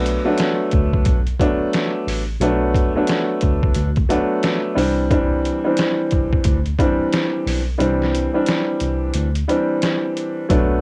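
A warm, woody upright piano sits up front in this moody, dark boom-bap hip-hop excerpt, its chords filtered at both ends and softened by cassette tape as it moves from Bm7 to Cadd9 at 4.8 seconds. Beneath it, a mellow tine electric piano carries the bass line, its worn, slightly out-of-tune tone clean and direct. The trip hop sampler-style drum kit is compressed, pitched down and gritty, with a thumpy kick, a medium-tuned snare and hi-hat, re-recorded in a small room and placed up front with its own cassette coloring. The groove moves at 89 BPM in 4/4 with a 63% swing on the 16ths, and the kick drops out from 7.8 to 10.5 seconds. Little reverb touches this home cassette recording, which is cut from a longer piece.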